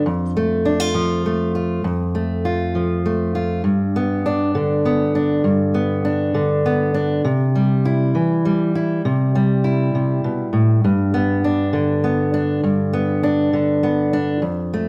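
A lilting 6/8 sway with a straight, unhurried feel carries this short folk excerpt, cut from a longer piece. A single fingerpicked steel-string acoustic guitar plays throughout, sitting up front with a dark, woody tone and the slightly dulled character of old strings. Its range stretches from low bass notes up into the middle register, giving the lone instrument a full, rounded presence. The harmony moves from F to G at 3.6 seconds, then to C at 7.2 seconds and back to G, lending the passage a hopeful, uplifting lift. A moderate reverb of a large studio, lingering for about 1.3 seconds, surrounds the guitar and gives the live, in-room performance an open, airy glow.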